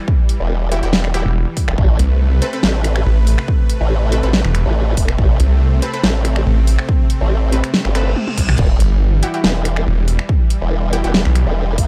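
A snarling, distorted saw bass anchors this heavy, menacing half-time wobble dubstep excerpt, entering at 1.3 seconds with an aggressive, growling, detuned unison sawtooth tone and a moving notch. Beneath it, a formant-sweep wobble bass adds a saturated, chorused pulse-wave throb. A punchy electronic kick and a dubstep drum kit with a huge snare, metallic hats, crash, finger snaps and toms sit up front with studio reverb and a tape-tinged character. A lush supersaw pad holds sustained chords with sidechain pumping, while a bold orchestra-hit-like synth stab cuts through with bright, layered bursts carrying built-in reverb and delay. The harmony moves from E minor add-nine to A minor add-nine and back. A reverse cymbal at 7.9 seconds leads into a brief drum fill, all within a dark, dry production.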